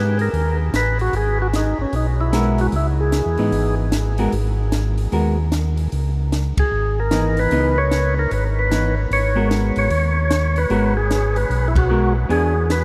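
A swung 4/4 at 150 BPM drives this bluesy, smoky soul jazz organ trio excerpt in G# minor, cut from a longer piece and set in a vast, echoing space with a huge ambient reverb. A percussive tonewheel organ with key click and second harmonic percussion carries the melody up front through a slow rotary speaker, pausing between 3.8 and 6.6 seconds, while a mellow, round second organ holds down the bass with chorus vibrato. A compact cocktail kit with dark cymbals, a high-tuned snare and punchy kick sits dry beneath, and a clean, picked hollow-body electric guitar comps from 2.3 seconds over G#m9 and C#m9 chords, with band accents at 6.5 and 11.7 seconds before a closing E7.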